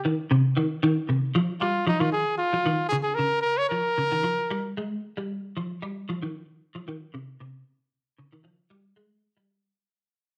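A brilliant, close-miked trumpet with light vibrato takes a short pop-style solo up front from 1.6 to 4.7 seconds in this hypnotic, driving afrobeat fragment. Alongside it, a clean, picked electric guitar, also up front, plays arpeggios through an ensemble chorus, all set in a wet, large studio reverb as the music fades out from 1.4 seconds onward.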